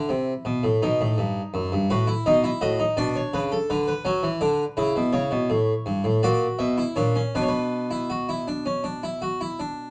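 A solo harpsichord in the Flemish style, airy and full with two sets of strings and placed up front, plays this contemplative, serious baroque-style three-part fugue in B minor, cut from a longer piece. Moving at 55 BPM in dotted quarters in a straight 12/8, tuned to A4 = 441 Hz, it ranges from F#2 to E5, passing from a rootless F#dim through B7, Bmadd9, C#dim and F#7/A# before settling on Bm at 7.3 seconds. Light reverb and a dark production frame the plucked tone.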